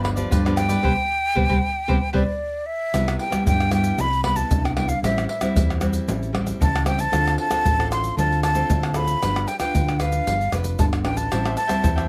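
A straight, festive 4/4 samba and choro groove drives this sunny excerpt, with tight surdo, pandeiro, tamborim and egg shaker heard up front as if in a small room. Beneath them, a hollow-body short-scale electric bass gives dark, round and punchy low notes. A breathy concert flute carries the melody throughout, close and expressive, with tongued notes, vibrato and lifted highs. A fingerpicked nylon-string guitar with fresh, classical-sounding strings supports the harmony, while a warm, crisp, picked cavaquinho adds accompaniment at the start, drops out soon after, and returns at 11.3 seconds. The band hits a shared accent from 0.8 to 2.9 seconds before the tune settles into a Cmaj7, Am7, Dm7, G7 cycle, all wrapped in light reverb.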